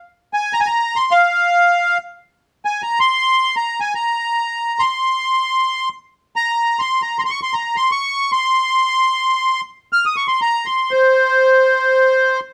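A wet studio reverb surrounds this short passage, cut from a longer Arabic maqam piece played in free time with a longing, hypnotic mood. A solo accordion carries it alone from 0.3 to 12.4 seconds, its reedy, sweet voice set up front and shimmering with a light tremolo tuning as it moves through a high register.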